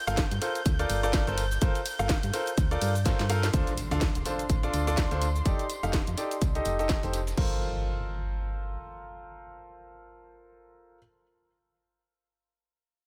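Energetic and soulful, this piano house excerpt at 125 BPM in G minor rides a punchy, up-front electronic kick, a dub-echoed house kit with a cracking snare, and a very quiet, gritty, pitched-up breakbeat kit and tambourine, under a round, dark FM bass and veiled, muted chamber strings that pump with the sidechain, while a clear, intimate grand piano riff with audible action noise, dub echo and sidechain pumping moves through a filter sweep from 3.5 s and, joined by an electronic impact, plays on to 11.0 s over Gm11, Dm7 and F13 chords in a lightly reverberant, echo-heavy mix.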